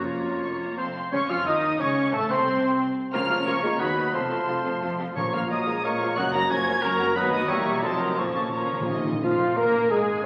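Dramatic and stormy, this brief excerpt from a fast romantic orchestral movement in triple time surges forward with a rubato feel. A rich, distant violin section carries the melody high above, while a bright clarinet and a very quiet, lush second violin section trace secondary lines. Underneath, warm violas, a rich cello section and a dark, woody double bass section fill the lower register, with a dark, roomy French horn section holding sustained chords in the background. At 1.1 seconds a pure, silvery flute, a warm oboe and a mellow bassoon join the texture, and timpani struck with hard mallets sound briefly before a fill from 8.2 to 9.2 seconds. The harmony moves restlessly through minor chords, diminished and altered dominant colors, all heard through a wet scoring stage reverb and the crackle of a very old 78 rpm record.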